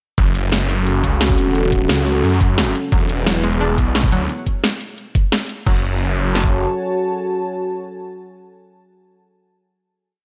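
Dark technical drum and bass at 175 BPM in F# minor, this short, aggressive and tense piece opens at 0.2 s straight into a drop, with two up-front electronic drum layers: a knocking kick and cracking snare, plus tight metallic hats, shaker and crash, all with a tape-warmed small-room character. A snarling, growling distorted saw bass carries chopped phrases beneath a deep, moody analog pad with chorus and sidechain pumping, while a round analog pluck sits in the background from 2.9 s, running a 16-step arpeggio sequence through chorus and analog delay as the chords move from F#m to E. At 5.7 s the drop gives way to a final F#m chord, with the kick, snare and bass carrying on briefly before the dark pad sustains alone until it ends at 9.2 s.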